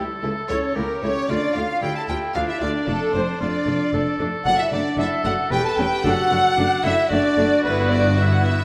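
Quick classical-period orchestral movement in 3/4 at 113 BPM, urgent and restless, shifting from D minor to D major at 4.5 s in this short excerpt cut from a longer piece. A chamber violin section carries the bowed melody with vibrato from the background, while a lush symphonic violin section, a bright, present solo oboe and an airy, metallic flute add second lines, and a close viola section supplies accompaniment. Mellow French horns hold sustained chords over a clear cello section and a dark double bass section with soft attack and expressive portamento, all set in the long, wet reverb of a scoring stage.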